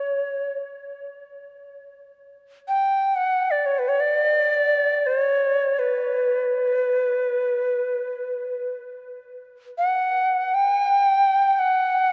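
Meditative world music in free time, this short excerpt in B hirajoshi features a lone Native American-style cedar flute playing up front from 0.0 to 12.1 seconds, ranging from B4 to G5. The flute's woody, airy tone has vibrato, soft attacks and lifted highs, with delay trailing its phrases. A huge, wet ambient reverb with a 6.0-second decay creates a spacious feel, while the worn cassette tape adds a warbling pitch drift.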